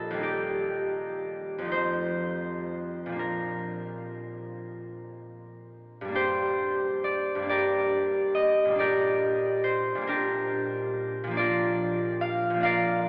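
A bright, ringing concert harp plays alone and up front in this dreamy, graceful classical fragment, fingerpicked with rubato in a slow 6/8 at 39-49 BPM, moving through Eb, F7 and Bb in Bb major before turning to G minor at 6.1 s, its tones ranging from Bb1 to F5 and bathed in a cathedral reverb that hangs for 6.5 seconds, heard from further back in the room through an AM radio sound.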